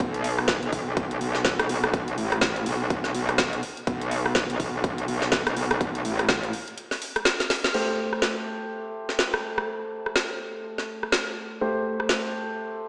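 Heard through a small speaker on a big sound system in a bare stone room, with a lush hall reverb over it, this gritty, aggressive bass house excerpt in A minor runs at 124 BPM with a swung 16th feel. A distorted, chorused FM wobble bass pumps up front beside a punchy, overdriven electronic kick and a garage kit of crash, hi-hat, rim click and woody snare, until the bass cuts out at 6.5 seconds and a drum fill at 7.4 seconds leads into a band accent. From 7.7 seconds a dark, mellow grand piano plays long-sustaining Am7 stabs with pumping and digital delay over the continuing kit.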